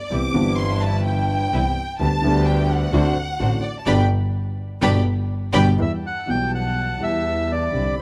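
A lush, bright violin section opens this melancholic, sultry tango excerpt in G major, its focused, vibrato-rich bowing carrying a second line high above the band. Beneath it, a dark, mellow grand piano supplies the accompaniment and a clear, earthy double bass, bowed by one player up front with a biting, nasal edge, anchors the low end at 126 BPM in a rubato 4/4. A distant, intense string section sits in the background with stabs over harmony that moves from Cmaj7 through G/D and D7 to G, where the band adds an accent at 3.9 seconds. At 5.6 seconds a reedy bandoneon steps forward with the melody, its sound coloured by tape echo and a boxy small-room character, as the music turns toward Em. The whole has the dry, close feel of a 1970s studio recording, and it breaks off as part of a longer piece.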